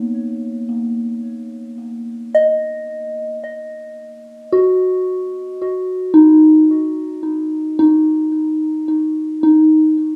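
The rhythm moves in an unhurried 3/4 at 55 BPM with a straight feel, setting a slow, spacious pulse for this reflective ambient fragment cut from a longer piece. A single soft synth bell carries everything alone from 0.0 to 10.2 seconds, ranging from A#3 up to D#5 and sitting up front in the mix. Its FM tone is pure and mellow, with a fast attack, decaying notes and a long release, colored by chorus, phaser, cassette tape character and tape echo. A high D#5 sounds at 0.2 seconds, a D# minor harmony arrives at 3.4 seconds, and by 6.7 seconds the harmony falls away into unaccompanied bell tones. The whole piece sits in a wet small room with a short reverb, and its home cassette recording lends a hazy, intimate grain to the gentle, contemplative mood.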